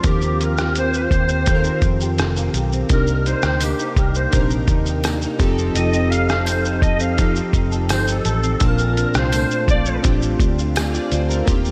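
Lightly reverberant, hazy and mellow, this short indie bedroom-pop clip features a clear, vibrato-laden clarinet carrying a jazz-style solo melody through ensemble chorus and diffuse ambient delay until 10.0 seconds, over glossy retro synth keys with cassette-tape colour, a dark, hollow-bodied semi-hollow electric guitar with chorus and warbly pitch drift, a round, foam-muted fingered bass, and a compressed, muffled sampler-style drum kit with a thumpy kick up front, while a jingly tambourine sits in the background from 3.6 seconds.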